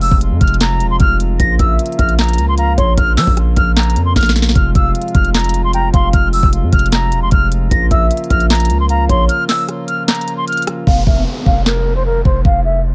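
Melancholic and brooding, this half-time trap cut from a longer hip hop piece is led by an up-front concert flute with a pure, straight tone, its tongued melody softened by a low-pass filter and trailed by delay. Beneath it, a principal-stop pipe organ holds sustained chords in a baroque voicing with a touch of chiff, playing until 10.8 s, while a heavy, aggressive, distorted 808-style bass with a noise layer, a fast attack and a decaying sound sits prominently in the mix. The electronic trap drum kit is up front, with a knocking kick, sharp snare, crisp hi-hats, handclaps and rim clicks, plus a drum fill just past the 4-second mark. From 1.6 s to 9.3 s a velvety, mellow synth lead with detuned unison, chorus, vibrato and delay hums in the background as a second line. A break follows, and from 10.9 s the hi-hats drop out and an electronic downlifter carries the closing stretch over an unharmonized ending, all in a dry space.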